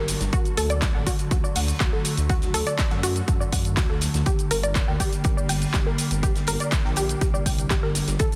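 Over a straight 4/4 pulse at 122 BPM, this emotional, dreamy progressive house excerpt in G harmonic minor sets a punchy, overdriven electronic kick up front with an overdriven house kit of handclaps, hi-hat and shaker, a very quiet acoustic indie kit of hi-hat and snare, a deep, rumbling detuned saw bass, lush unison pluck arpeggios with cassette-tape color and dub echo, and an evolving, morphing wavetable pad holding sustained chords with chorus, all three synths pumping to the sidechain as the harmony moves from D at 0.3 seconds to G minor at 4.3 seconds in a dense, heavily limited mix with light reverb.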